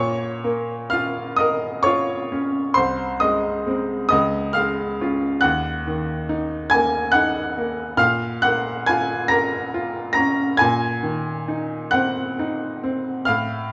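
Romantic classical nocturne for solo piano in Bb minor, yearning and wistful, moving slowly at 46 BPM in 6/8 with free, uneven rubato, as a bright, woody upright piano with short sustain sits up front in a moderate recital-hall reverb, ranging from deep bass to high treble through a 13.7-second passage cut from a longer piece that drifts from Bbm through Db and Ebm before settling on a shadowed Cm7b5 over Bb.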